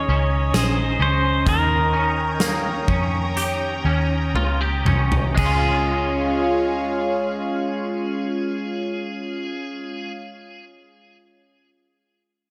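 A moderate plate reverb with a long 2.4-second tail bathes this short dream pop passage, cut from a longer piece, in an ethereal, blissful glow. Sitting in Db lydian at a slow 58-66 BPM in straight 4/4, it gradually slows through its opening 5.4 seconds as the harmony moves from Dbsus2 to Eb7 before settling on Db. Up front, a twangy pedal steel guitar carries the melody with fingerpicks, slide and volume swells, its clean, compressed tone trailed by digital delay, while a swirling sawtooth analog pad holds sustained chords through phaser and chorus, with a slow attack and long release. A bright, hollow-body semi-hollow electric guitar picks arpeggios alongside them, thickened by ensemble chorus and delay, and a dark, round, foam-muted picked bass anchors the low end with a punchy, amped presence. A huge acoustic arena kit with bright cymbals, a medium-tuned snare, a punchy kick and toms enters at 0.5 seconds, rolls through a fill from 4.4 seconds and drops out at 5.6, leaving the remaining instruments to drift into the second section.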